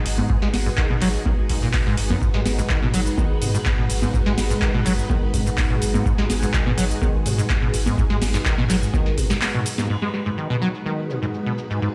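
Acid house at 125 BPM in 4/4, trippy and raw, this excerpt rests on an Abm7 chord, where a lush, vintage string machine with phaser and ensemble chorus holds sustained chords alongside a lo-fi, warbling pad sitting in the background, both pumping against the sidechain. A squelchy, resonant sawtooth acid riff with overdrive, analog chorus and digital delay drives the piece over a round sine sub bass, while a booming analog drum machine, up front, with crisp snare, metallic hats, handclaps, congas, cabasa, toms and crash, joins a deep, tape-kissed electronic kick. The kick and sub bass drop out at 9.3 s, leaving the strings, pad, riff and drum machine to carry a new section from 9.9 s in a light, small-room ambience.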